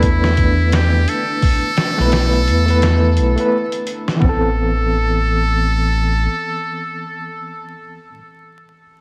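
A muted trumpet, an overdriven reed electric piano, a dark pad, a round analog bass and a sampler-style drum kit all sound together from the start of this melancholic, brooding trip hop fragment, cut from a longer piece. The trumpet carries the melody with a buzzy, thin metal-mute tone, light vibrato and a soft jazz-style attack, treated with 12-bit sampler grit and tape echo. The reedy electric piano plays the accompaniment through a combo amp with tremolo, sharing that same grit and echo. Underneath, the up-front analog bass sits deep and sustained, while the very quiet, evolving pad adds detuned, chorused sustained chords until 4.2 seconds, when the harmony moves from Esus4 to Amadd9. The compressed, pitched-down drums, with a thumpy kick and a medium-tuned snare recorded in a large room, drop out at 4.4 seconds, leaving a dreamy, hall-soaked mix with vinyl crackle as the trumpet ends at 7.8 seconds.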